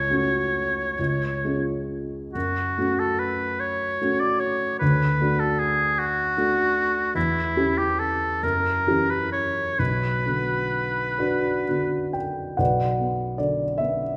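This is a romantic classical duo for oboe and grand piano, elegiac and yearning in mood, moving slowly in 6/8 at roughly 41-52 BPM counted in dotted quarters, with a flexible rubato feel. The oboe carries the melody up front with a clear tone, light vibrato and soft attacks, phrased in a classical style across a range from E4 to D5. Beneath it, a dark baby grand piano supplies the accompaniment, mellow and intimate, with its action noise audible and a natural sound spanning B1 to G5. The harmony starts in F# minor and turns toward B minor at 7.2 s, passing through a diminished chord and an F#7b9 before settling on B minor. The oboe falls silent at 12.2 s, and the piano continues alone into a new passage until the fragment breaks off at 14.2 s, the whole duo bathed in the wet reverb of a recital hall.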